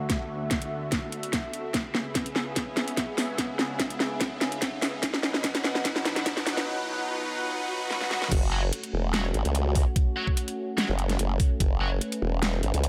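A lightly reverberant mix opens this excerpt of aggressive, heavy wobble dubstep in a half-time feel. A lush, detuned supersaw pad with phaser and sidechain pumping sustains chords under a filter sweep, joined by a background riser and swell, while a layered, tape-warm drum kit with a huge snare and metallic hats plays fills over a knocking electronic kick. At 8.3 seconds the drop arrives with an up-front, compressed formant-sweep wobble bass carrying chorus and overdrive, and from 8.5 seconds a scooped, double-tracked high-gain guitar adds distorted stabs with delay.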